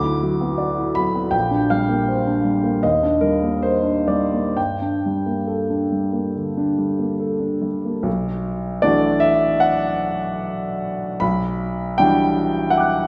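A clear, smooth grand piano with a vintage character and long sustain carries this short, wistful excerpt of impressionist solo classical music, its rubato phrasing giving the whole a nocturnal, drifting feel. Rich colours such as D69, Bb69 and Ebmaj7 open the passage before it shifts into a new section at 8.1 s, moving through Bm7 and Em9/B. The piano sits up front, yet a wet scoring-stage reverb places the listener further back in the room, lending the sound a spacious, hazy halo.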